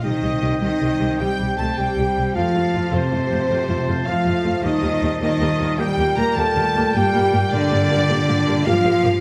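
In a straight 12/8 at 104 BPM, this triumphant, soaring cinematic passage, cut from a longer piece, sets a distant, vibrato-rich violin section carrying the melody over Cm, F, Eb and Gm, supported by a second, focused violin line, a hollow flute, a soft-attack oboe and a faint clarinet, while lush bowed violas accompany, mellow French horns and tight trombones sustain chords, bright trumpets add stabs, and woody double basses and cellos anchor the bass, all in a moderate scoring-stage reverb over about 9.2 seconds.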